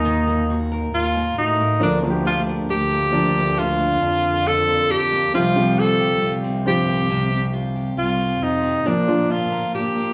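Heartfelt and hopeful, this excerpt from a pop ballad is carried by a bright alto saxophone up front, singing the melody in a jazz style with light vibrato and scooped notes. Beneath it, a woody upright piano with short sustain sits in the background, a picked steel-string acoustic guitar adds warm arpeggios with a touch of finger squeak, and a muted cello section supplies a dark, veiled, bowed bass line with soft attacks. The band plays live together in a small room with moderate reverb, and the harmony moves from E-flat minor toward a settled B-flat by 8.9 seconds.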